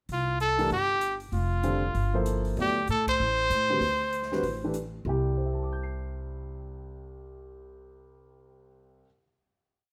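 A brilliant, forceful trumpet opens this short modal jazz piece at a brisk 193 BPM, swinging a free, searching melody with scooped notes and light vibrato over a woody, thumpy upright bass in a two-feel and an airy big-band kit keeping time on the hi-hat in the background. A warm grand piano comps in syncopated quartal voicings from 0.6 seconds as the harmony moves between suspended dominant chords, and the band hits an accent at 3.0 seconds. The horn and drums drop out before 5 seconds, leaving piano and bass to ring out a spiritual final C major chord in light reverb.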